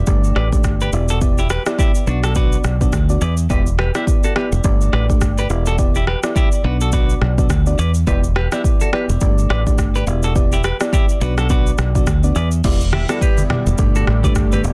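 Afrobeats at 105 BPM in E minor, mellow and smooth, with a swung sixteenth-note feel over a looping Gsus2, Em7 and Bm progression. An up-front electronic drum kit with a deep kick, rim click, shaker and a softly clipped snare sits alongside a punchy, foam-muted fingered bass, while a round, dark FM electric piano with chorus and a bright, twangy clean guitar riff through digital delay fill out the groove. At 12.6 seconds a breathy, detuned pad with a slow attack enters in the background, joined at 12.9 seconds by soft-handed, low-tuned congas, all within a dry, dense and heavily limited modern mix.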